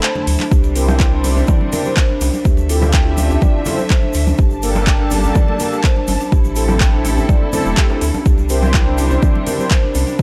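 An overdriven, deep electronic kick sits up front from 0.5 s, driving this earthy afro house excerpt at 124 BPM alongside a gritty deep house kit of handclaps, metallic hats and toms, with hard-handed congas, a grainy tube shaker and a distant djembe with metal rattles adding an acoustic layer of percussion. A round sine sub bass with tube saturation pumps under the kick, while a mellow soft-mallet marimba plays echoing arpeggios and dark, detuned synth brass fires chorused stabs with a filter sweep. Behind them a lush, distant string section holds bowed chords through Am, C, Dm7, Gmadd9 and Am7 in a dry, small-room recording.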